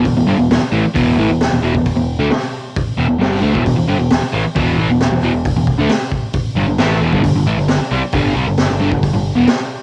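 The crunchy overdriven guitar leads this gritty, menacing garage rock fragment, its picked, double-tracked riff sitting up front and running the full length of the clip, cut from a longer piece. Beneath it, a growling picked electric bass adds a bright, overdriven edge, played direct and through an amp in a low register. The raw drum kit of hi-hat, kick and snare is saturated and mid-forward, with a high-tuned snare, a boomy kick and a rolled-off top that carries the character of cassette tape. The harmony holds on E minor before shifting to a G power chord at 6.6 seconds. A moderate booth ambience and the home cassette recording give the whole take a close, rough-edged immediacy in straight 4/4 time.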